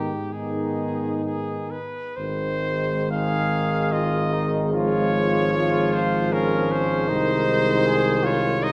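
A moderate scoring-stage reverb surrounds this short excerpt of a solemn, melancholic, hymn-like classical piece for brass band in 3/4, shaped with a rubato feel. A clear cornet with light vibrato and a soft attack carries the melody up front while a flugelhorn sings a second line beneath it; a punchy trombone sits in the background beside a dark, close-miked euphonium, and a mellow tuba holds the bass, all five playing from start to finish. The harmony opens on G#m, settles on Ab at 2.2 seconds, then passes through Db/Ab and Ab/C.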